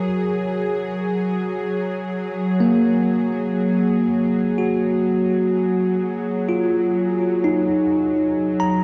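A straight, unhurried 4/4 pulse at 63 BPM carries this weightless, warm ambient fragment in Gb major, where a bright, bell-like tine electric piano plays clean arpeggios through delay and shimmer reverb, while a tense, string-like bowed drone with a slow attack, vibrato and a sawtooth-and-noise edge sustains beneath it, both sitting up front in a lush hall and a dark production as the harmony moves from Gbadd9 to Gbmaj13 at 3.9 seconds.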